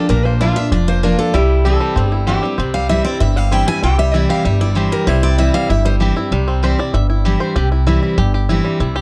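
Close, detailed microphones and a dry room put every string in sharp focus in this short bluegrass excerpt, which runs at a driving 193 BPM in straight 4/4 with a rustic, mixolydian flavor on C. A woody, thumpy upright bass with gut strings sits up front, plucked low and dark, while a dreadnought guitar carries the accompaniment with a full-bodied tone and audible finger squeak. Over the Bb-to-C changes, a twangy, percussive banjo and a bright jumbo guitar share the melody, with a metallic, nasal lap resonator adding a slide-played second line. The lead guitar drops out at 5.9 seconds and the resonator at 6.1 seconds. From 6.3 seconds the fingerpicked five-string banjo takes its solo over the bass and rhythm guitar.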